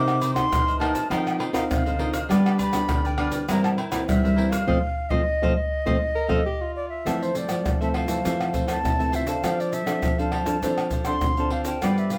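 A festive, sunny samba and choro excerpt at 101 BPM in straight 4/4, settling into F major from 7.1 s, with an airy, tongued wooden baroque flute carrying the melody over crisp picked cavaquinho, a fingerpicked classical nylon-string guitar and a second nylon-string guitar thumb-plucking the bass. An up-front, compressed and saturated percussion section of egg shaker, pandeiro, tamborim, agogo bells and tight surdo drives the groove, arriving at a band accent and drum fill before the second section. A breathy, mellow tenor saxophone slips in briefly from 6.2 s with subtone, vibrato and scooped jazz-style notes, all heard in a live room with moderate studio reverb.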